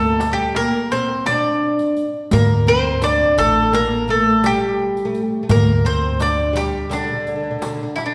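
In a straight 9/8, this hypnotic, melancholic Turkish makam ensemble, cut from a longer piece, sets a woody, double-strung mandolin melody up front over a bright, fretless oud second line and a pizzicato upright bass with steel strings that stops at 6.7 s, while a deep, crisp metal-shell darbuka and a close, dry, jingling riq sit in the background, all wrapped in wet recital-hall reverb until a drum fill at 8.0 s.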